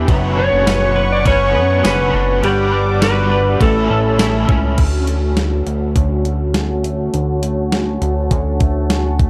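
A dry, dark and warm mix gives this dreamy, floating dream pop excerpt a close, intimate feel, moving at 102 BPM in a straight 4/4 in D major. Up front, a crisp 8-bit drum machine with a thumpy kick, fat snare, hi-hat, ride, crash and tambourine sits beside a glossy, retro synth bass whose pulse-width tone is chorused and swept by a filter. A smooth, detuned analog pad holds sustained chords through chorus and a low-pass filter, while a clean, compressed semi-hollow guitar picks arpeggios in the background with subtle chorus, delay and filtering. A bright, overdriven semi-hollow guitar adds accompaniment with tremolo and ensemble chorus until 5.3 seconds, and a slightly broken-up slide guitar carries a delayed melody between G4 and D5 from 0.4 to 4.5 seconds. The harmony moves from Bmadd9/F# through Gmaj7 and A to Dmaj7, and a filter sweep arrives at 4.8 seconds as the next section begins.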